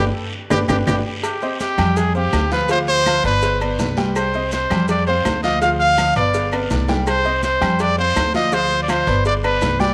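Fiery and danceable, this salsa clip opens on a band accent with a drum fill before settling into a C minor vamp, where a bright trumpet with light vibrato and tape echo carries the melody up front over a clear, worn grand piano and a thumpy, woody pizzicato upright bass. From 0.5 seconds a percussion section fills in behind them: ringing high-tuned congas, round low-tuned bongos with cowbell, metal-shelled timbales with agogo bells, raspy guiro, grainy maracas and very quiet claves. A moderate echo-chamber reverb surrounds the band, and a second drum fill arrives at 6.5 seconds.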